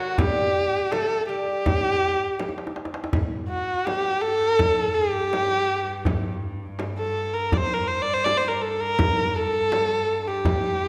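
A straight 4/4 pulse at 82 BPM runs through this short cut from a longer Persian modal ensemble piece in G avaz esfahan, melancholic and full of longing. The tombak, tight with soft hands, carries the rhythm throughout, joined from 0.2 s by a compressed, saturated frame drum played with hard hands, and a drum fill from 2.4 to 3.1 s marks the turn into the second section. Up front, a single bowed kamancheh sings the melody between F#4 and D5 with rich vibrato, portamento and close, expressive phrasing. A delicate fingerpicked lute with gut and double strings offers a low second line only in the opening seconds, stopping at 2.7 s. From 3.1 s a bowed chamber cello section holds a G2 drone, nasal and reedy in period style with light vibrato, all set in a recital hall reverb with a 1.6 s decay.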